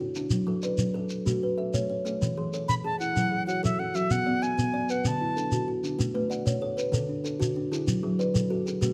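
A bright, reedy concert flute carries the melody from 2.7 to 5.7 seconds, its tongued, vibrato-tinged line sitting up front over a hypnotic, rippling southern African traditional cycle in the mbira style. Beneath it, two kalimbas weave interlocking arpeggios: one mellow and ringing under a fingertip pluck, the other short and airy under the thumb, both woody with a solid-board body. A grainy shekere joins at 0.2 seconds, dry and near. The music moves at 127 BPM in a straight 12/8 in A major, cycling through F#m, A, E, Bm and D before shifting into a second section. A moderate recital-hall reverb surrounds the detailed, close microphones, giving this cut from a longer piece a clear yet spacious sound.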